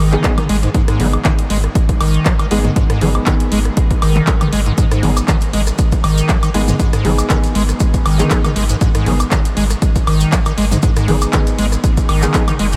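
Raw and driving, this acid house excerpt in G# minor moves at 119 BPM with a light swing, built on a squelchy, resonant acid bass riff with overdrive and a pumping pulse, a round sine sub bass, boxy grand piano stabs, a punchy, tape-warm analog drum machine of handclaps, hi-hat, rim click, toms and woodblock, an up-front electronic kick, and grainy maracas joining in the background at 4.8 seconds, all bathed in a huge, dreamy reverb.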